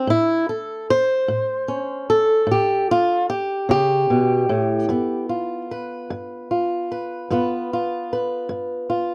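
A slow 12/8 lilt at 50 BPM, counted in dotted quarters with a straight feel, carries this short, soulful yet rollicking slice of acoustic country blues cut from a longer piece. A single fingerpicked, swing-style acoustic guitar plays alone and up front for the full 9.1 seconds, its dark, boxy tone spanning G2 to C5 as it moves from A7 to G7 at 4.9 seconds. Close, detailed microphones and a light touch of reverb keep every string intimate and present.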